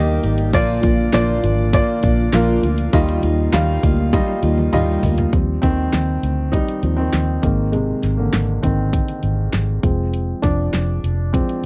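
A straight 4/4 pulse at 100 BPM drives this uplifting piano-led pop cut from a longer piece, set in Eb major and tuned to A4 = 438 Hz. A punchy, up-front electronic drum kit, layered and produced with a fat snare, enters at 0.2 seconds on hi-hat, kick, snare and toms, while a round, foam-muted vintage electric bass, dark and amped, holds the low end. A natural-sounding baby grand piano plays accompaniment throughout, joined at first by a dark, full-bodied fingerpicked steel-string jumbo guitar riff and a very soft, flute-like tonewheel organ with chorus vibrato and slow rotary speaker. A drum fill at 4.1 seconds leads into the second section at 5.3 seconds, where the guitar and organ drop out and the piano takes a solo over chords moving from Eb6 through Abadd9 to Fm. The dry, close production has a 1970s studio character with little reverb and a warm feel.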